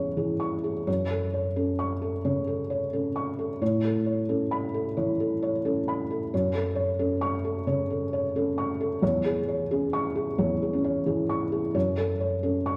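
Reflective and melancholic, this neoclassical minimalist piano piece in F# minor moves at a rubato 88 BPM in 4/4, cut from a longer work. A felt-muted upright piano plays alone from 0.0 to 12.8 seconds, its thick felt giving a soft, dark, intimate tone with short sustain and audible action noise, placed up front and ranging from E2 to C#6. The chords settle between F#m, Aadd9 and C#m/E, and a large, wet studio reverb of 1.3 seconds surrounds the sound of a live room.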